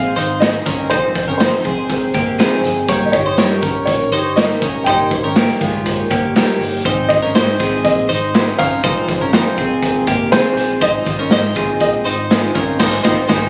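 Jangly indie pop with a youthful, bright mood, where an intimate, slightly detuned upright piano carries the melody over a woody, shimmering twelve-string acoustic guitar, a twangy twelve-string electric guitar playing arpeggios up front with warbly pitch drift and tape echo, a round, foam-muted electric bass and a gritty, punchy garage drum kit, all caught on a phone in a reverberant studio room before a band accent at 12.8 seconds closes this excerpt.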